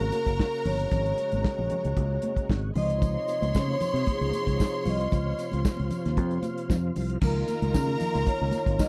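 A sultry, danceable disco excerpt opens with a mellow vibraphone melody, struck with soft mallets and shimmering with slow motor vibrato, over a lush bowed string line, thick, gritty organ chords turning through a slow rotary speaker, and a round, dark fingered bass up front with a tight-kicked, smooth soul drum kit. Bright, high-tuned congas sit in the background from the start, and a jingly tambourine joins them at 3.0 seconds, just after the harmony settles from Ab9sus4 onto Dbmaj9 at 2.8 seconds, before moving to Db69 at 7.2 seconds. The dry, close sound has a vintage 1970s studio character.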